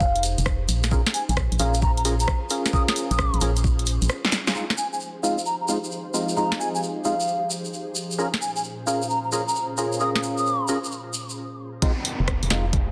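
A close-miked baroque flute carries the melody, airy and woody with a crisp attack and expressive vibrato, its line trailing a delay through this skippy, late-night slice of two-step UK garage, cut from a longer piece. Beneath it, an ethereal pad holds mellow, detuned sustained chords with chorus, tremolo and sidechain pumping, while a hollow, chorused organ stab punctuates the harmony as it shifts between Fm7 and Bbm7. The swung groove comes from a punchy, tape-coloured analog drum machine with hi-hat, rim click and a softly clipped snare, plus a grainy acoustic tube shaker and a layered, knocking electronic kick. A dark, organ-like FM bass with tube saturation sits up front, but the kick falls away at 3.8 s and the bass at 4.1 s, leaving the flute, pad and stabs to float over the lighter percussion. After a brief stop, the kick returns at 11.8 s for the drop, joined by the bass and an electronic downlifter, all inside light digital ambience and a dense, heavily limited master.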